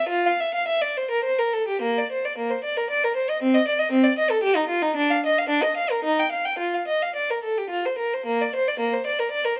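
In a flexible 3/4 that breathes with rubato, hovering between 101 and 119 BPM, this short cut from a longer classical piece presents a baroque-style suite movement for unaccompanied violin in Bb major, tuned to A4 = 441 Hz. A single player carries everything, bowing with a rich tone from Bb3 up to G5, shaped by vibrato, soft attacks and gliding portamento. The mood is radiant and serene, and the playing stays expressive throughout. A brief opening phrase closes at 1.8 s, and the same material returns and unfolds until the cut at 9.6 s. The violin sits up front in a light reverb that adds a gentle sense of space around the solo line.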